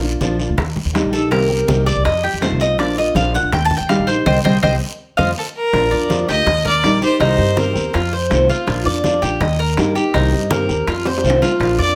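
A danceable Cuban son and guajira groove opens on fingerpicked nylon-string guitar with audible finger squeak, a thumpy, woody pizzicato upright bass up front, and very quiet, damped low congas, joined almost at once by tight high bongos in the background and a raspy guiro. From 1.1 s a metallic, double-strung Cuban tres takes the spotlight with picked arpeggios, and the band lands an accent and a drum fill as a focused, boxy bowed fiddle with light vibrato enters at 5.4 s, set in plate reverb. Cycling through a simple major-key progression, this section of a longer piece sits in a moderate studio room, with close, dry congas and guiro.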